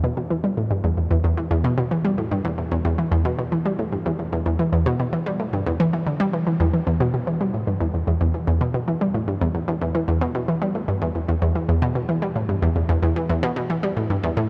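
A huge, wet ambient reverb with a long 7.7-second tail surrounds a lone analog pluck, round, detuned and bright with a noisy edge, sitting up front with chorus and tape echo as it sounds between E2 and G3 in E minor at 112 BPM for this hypnotic, cosmic 14.5-second fragment cut from a longer ambient piece.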